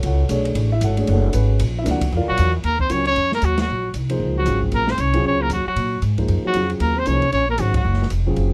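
Close, detailed microphones and little reverb give this brief, cool and spiritual modal jazz cut in Eb dorian an intimate, present sound, swinging at 230 BPM in 4/4. A dark, worn grand piano with long sustain, a woody, growly upright bass up front and a smooth, boomy-kicked drum kit with dark cymbals open the passage. At 2.3 seconds a clear trumpet with vibrato takes the melody while a breathy, whispered trombone carries a second line beneath it, with band accents landing at 3.5 and 7.7 seconds.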